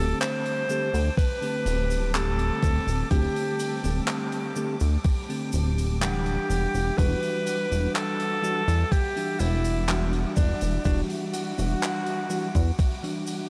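This melancholic, hazy vaporwave excerpt opens with a bright alto saxophone carrying the melody up front, its light vibrato and soft attack roughened by vintage 12-bit sampler grit and tape echo. Beneath it, a bell-like tine electric piano plays clean accompaniment through analog chorus and tape echo, while a lush bowed string section holds sustained chords with a woody vibrato in the background. A glossy, retro synth bass blending pulse and sawtooth tones with a filter pluck sits prominently in the mix from the start. At 62 BPM in a straight 4/4 feel and in E minor, a gated 80s kit of cabasa, handclaps and hi-hat in a bright stone room enters at 0.2 seconds, followed at 1.2 seconds by a thumpy, overdriven electronic kick placed squarely up front. The harmony moves from D7sus4 to Em9 at 6.5 seconds, all within a small room ambience and slightly sharp tuning.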